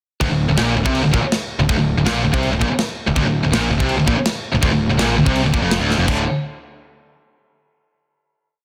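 A relentless, heavy metal piece in D minor at 164 BPM opens at 0.2 seconds with two bright, high-gain electric guitars picking a single-note riff, a growly fuzz bass driving eighth notes that double the riff, and an up-front, tight acoustic kit with china and crash cymbals, a medium-tuned snare and a clipped kick, until a drum fill at 5.9 seconds leads into a final D5 chord at 6.1 seconds, all in a dense, heavily limited modern mix with studio reverb.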